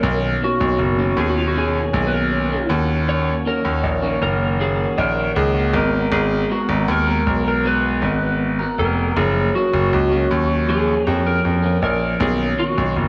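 Indie bedroom pop at 79 BPM in F# major, nostalgic and laid-back, where an electric slide guitar played with fingerpicks carries the melody through lush chorus and delay, a slightly broken-up guitar through a small old amp picks accompaniment with subtle chorus and vibrato, and a brilliant, up-front grand piano holds the low bass with long sustain, all moving from Bmaj9 through D#m7, G#m9 and F#maj7 inside a dreamy mix soaked in lush hall reverb.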